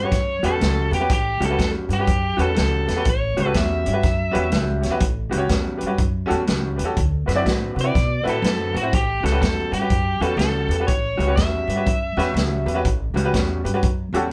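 Laid-back and swaggering, this electric blues shuffle sets a biting, overdriven lead guitar melody up front over a bright, slightly detuned upright piano with audible action noise, a woody pizzicato upright bass, a vintage drum kit with a punchy kick and rolled-off top, and a dark, slightly broken-up riff guitar through a small old amp, the band playing live in one room with moderate ambience as the chords move from A13 to D13 at 7.0 s and back at 8.9 s.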